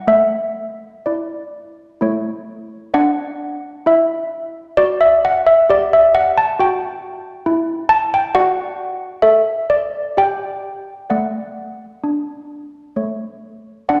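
A wet scoring-stage reverb with a 2.0-second tail surrounds this short classical fragment, cut from a longer piece, while the malleted handbells themselves sit close-miked, dry and up front. The lone handbells play a serene, festive tune in D major and 3/4 time, moving at a stately 62-68 BPM with a straight feel across a range of A3 to A5. Their tone is bell-like and full, with medium clappers giving damped, short notes. An opening passage hangs on Asus4 resolving to A before a longer second phrase begins at 2.9 seconds on D and travels through Emadd9, D/F#, G5 and D/A. The harmony settles back on A at 13.0 seconds, just before the fragment closes at 14.0 seconds.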